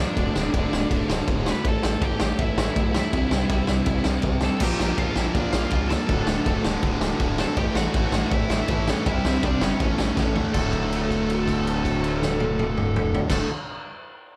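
A rowdy, upbeat punk rock excerpt bursts in with a dark, high-gain lead guitar carrying the melody over a sludgy, overdriven guitar riff and a gritty, nasal synth bass with a sawtooth bite and resonant, sustained tone. A loose indie drum kit joins at 0.2 seconds, sitting up front with a punchy kick, a medium-tuned snare, crash and ride cymbals and toms, its saturated studio-room sound rolled off at the top. At 4.6 seconds a second, brighter overdriven guitar enters in the background to thicken the picked riffing. The straight, driving feel moves through power chords and simple major changes before a drum fill at 10.2 seconds leads into a closing passage built on a held note. Light reverb gives the whole band the rough, immediate sound of a group playing live in one room.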